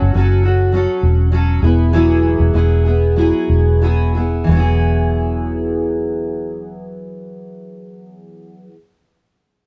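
A round, punchy electric bass with a dark, foam-muted tone sits up front, anchoring this heartfelt, easy-going acoustic pop excerpt in E major, moving through F#m and Eadd9 at 88-104 BPM with a light sixteenth-note swing, and slowing down over its first 4.5 seconds. Beside it, a double-tracked, fingerpicked jumbo steel-string acoustic guitar provides full-bodied accompaniment until 8.8 seconds. The sound is a dry, close 1970s-style studio recording with a touch of studio reverb.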